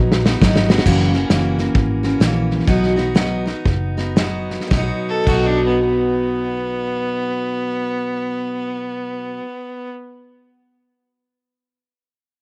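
A drum fill on a punchy, small-room country kit opens this down-home, easygoing honky-tonk piece in B major alongside a bright, full-bodied picked acoustic guitar and a dark, round, foam-muted electric bass, as the swung 4/4 groove slows down early on within a 108 to 136 BPM range. A biting, focused single fiddle with light vibrato enters close and up front at 5.1 seconds to play a second line over the B chord, and the kit drops out at 5.5 seconds. The drums, guitar and fiddle carry a cassette-tape character within a moderate home-recorded room.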